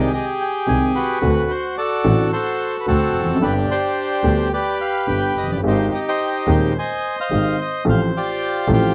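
Rubato over a loose 4/4, this short melancholic, dramatic tango fragment, cut from a longer piece and tuned slightly below standard pitch, unfolds across roughly 8.9 seconds. A reedy, up-front bandoneon carries the melody over a woody, slightly detuned vintage upright piano, while a single bowed double bass with a focused, clear tone and vibrato anchors the low end. Moderate studio reverb gives the dark production a warm glow, and the harmony shifts from Abmaj7/C through D7, G and Abmaj7 before settling on Fadd9/A near 7.9 seconds.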